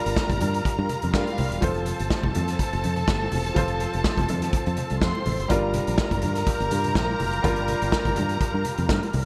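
A straight, driving disco groove at the heart of this glamorous excerpt comes from a punchy, up-front vintage drum kit with gated reverb, a foam-muted fingered bass and very quiet congas, while an intimate concert grand piano, a gritty overdriven tonewheel organ with chorus vibrato and slow rotary speaker, and a lush bowed string section carry the Gm7 and F chords, before tight, clear horn stabs arrive at 6.5 seconds.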